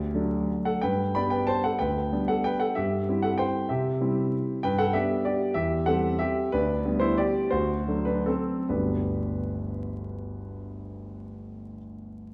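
A solo concert grand piano, smooth and up front with deep bass and a vintage tone, opens this graceful, playful classical waltz fragment in G major and 3/4, moving with rubato between 134 and 203 BPM and slowing from 6.0 to 8.7 seconds as a D7 chord resolves to G, heard in a dark production with a reverberant recital-hall sound and vinyl crackle.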